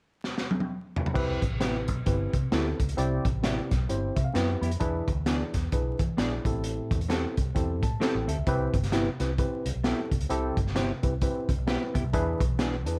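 A swung 131 BPM groove in 4/4 drives this danceable excerpt of uptempo 1960s-style soul in C major, opening with a saturated, gritty breakbeat drum fill with a high-tuned snare and dark cymbals before a worn, slightly out-of-tune tine electric piano arrives at 1.1 seconds and a round, foam-muted fingered bass joins at 1.2 seconds, the piano adding short fills over Cmaj7, E7 and Am7 while a hollow-bodied semi-hollow guitar stabs through analog chorus, all in a dry room with vinyl crackle.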